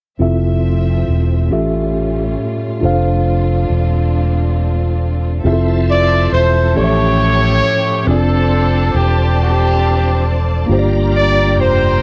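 Gospel in a slow 6/8 at 46 BPM in F major, this soulful, reverent excerpt opens on mellow electric piano, lush bowed strings and a round, punchy fingered bass up front over Fmaj7, A7b13 and Dm7, before a shouting tonewheel organ with slow rotary and key click joins in the background at 5.5 seconds and a soft-attack saxophone section and forceful, scooped trumpet take the melody from 5.9 seconds, all in a dry, close 1970s-style studio sound.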